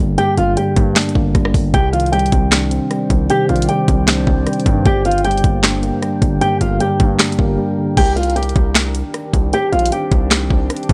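A thumb-plucked flamenco guitar carries the melody over a mellow, clean tine electric piano and a saturated, distorted 808-style bass, with a trap kit of knocking kick, sharp snare, bright hi-hats, handclaps, rim clicks and crash joining at 0.2 seconds in a menacing, dark half-time groove at 154 BPM in C minor. A deep, detuned sawtooth pad with chorus and reverb settles into the background from 2.8 seconds as the harmony moves between Gm and Cmadd9. After a brief break, the electric piano stops at 8.0 seconds while the guitar, bass, drums and pad continue in a dry, gritty mix with the drums up front.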